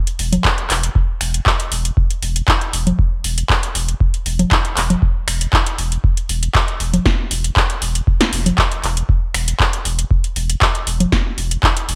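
A straight 4/4 groove at 118 BPM drives this trippy, playful acid house fragment: an up-front analog drum machine lays down a punchy snare, metallic hi-hats, congas, finger snaps and handclaps in a small room with gated reverb, a dry, deep electronic kick arrives at 0.4 s, and a round, mellow sine sub bass sustains on E1 with sidechain pumping, all within a bright 1980s-style digital production.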